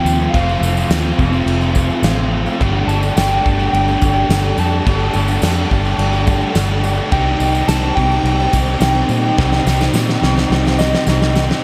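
A straight 4/4 pulse from a loose indie drum kit with a fat snare and tight kick, joined by jingly tambourine and a dark, round, punchy muted bass up front, drives this hazy, dreamy shoegaze and dream pop excerpt, where two biting overdriven guitars, one with analog chorus and one double-tracked, and a crunchy overdriven guitar with reverse reverb play riffs in the background beneath a gentle, warbling FM synth lead melody treated with chorus, tremolo and delay, while a lush sawtooth string machine with phaser and ensemble chorus enters at 2.6 s with sustained chords and the drums close on a fill from 9.4 s, the mix soaked in a huge ambient reverb.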